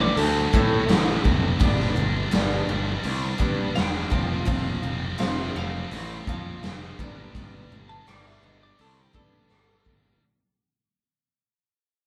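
A straight 4/4 pulse at 84 BPM drives this dark, brooding quiet-loud alternative rock passage, cut from a longer piece. A raw garage drum kit enters at 0.2 seconds and sits up front with a punchy kick, a medium-tuned snare, rim clicks and hi-hat, sounding gritty and saturated with a rolled-off top. Under it, a growly fuzz-overdriven picked bass and a scooped high-gain guitar riff move through Am, Gadd9 and F, while a boxy steel-string acoustic picks arpeggios and a twangy, compressed twelve-string electric plays a clean solo melody, all played live in one room with moderate large studio reverb as the whole passage fades out.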